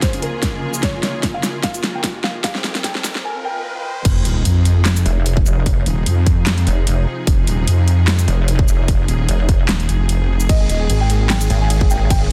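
Swung half-time 4/4 at 149 BPM in F minor drives this menacing, chaotic heavy wobble dubstep cut from a longer piece, where a dark, boxy grand piano melody with digital delay and a blurred granular cloud pad float over clear, bowed symphonic strings pumping beneath a punchy electronic kick and a dubstep kit of huge snare, metallic hats, handclaps, shaker and crash, while background risers and a sub drop build through a drum fill until the drop at 4.0 s unleashes a saturated, detuned sawtooth wobble bass with chorus and overdrive, joined at 5.1 s by a pulsing pluck wobble bass, with the piano returning at 10.5 s in a dense, heavily limited, dry master.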